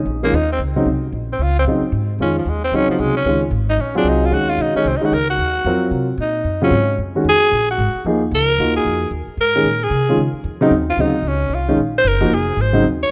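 A growling, raspy tenor saxophone solos up front from 0.2 seconds in this searching, cool excerpt of swinging jazz, its gritty tone set over minor eleventh chords that give way to a suspended harmony at 8.6 seconds. A dark, mellow baby grand piano sits equally forward with the accompaniment, while a woody, thumpy pizzicato upright bass anchors the low end. A moderate plate reverb lends space to the rough home-demo mix.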